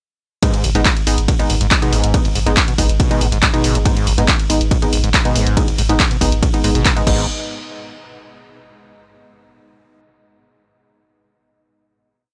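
A dry, gritty hardware recording of driving peak-time techno in G# minor at 140 BPM, intense and hypnotic, holds a single G#m chord through a drop that runs from 0.4 to 7.3 seconds before a final hit. A punchy four-on-the-floor electronic kick and an up-front analog drum machine with closed and open hats, ride, clap and crash drive the piece, while a round sine sub bass with tube saturation and sidechain pumping rumbles low between the kicks. Over them a screaming, squelchy sawtooth acid line with accents and slides runs through distortion, chorus and tape echo, and a muted, detuned dub chord stab moves one shape in parallel in a dotted rhythm, with a band accent at 6.9 seconds.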